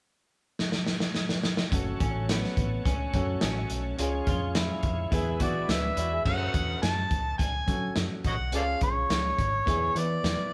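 Uptempo 1960s-style soul at 106 BPM in F# minor, this urgent, driving clip is cut from a longer piece and captures a band playing live in a moderate stone room. A crunchy breakbeat drum kit opens with a fill at 0.6 seconds, its saturated sound marked by dark cymbals, a tight kick and a rolled-off top, sitting up front. At 1.7 seconds three more parts arrive over an F# minor chord: a round, punchy, foam-muted electric bass, a woody upright piano with long sustain, and a shouting tonewheel organ with key click, overdrive and a slow rotary speaker, held in the background until 6.3 seconds. A bright, slightly broken-up electric guitar through a small old amp plays a compressed, picked riff from 2.0 seconds until about 6.2 seconds. At 5.4 seconds an overdriven, amplified harmonica takes the melody in jazz style, up front with light vibrato, tongue slaps and scooped notes, as the chords move through F# minor, C# and E.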